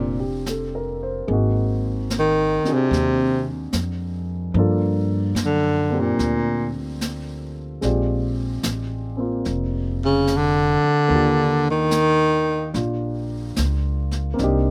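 Swung eighths in 4/4 carry this intimate, tender jazz ballad fragment, where a mellow baritone saxophone solos up front with light vibrato, soft attacks and scooped notes until 12.7 s, over a natural-sounding grand piano touched by slapback echo, a woody, growly pizzicato upright bass and a brushed snare and hi-hat kit entering at 0.5 s, heard dry and outdoors with little reverb as the chords move from Bb69 through Gm7 to Ebmaj9.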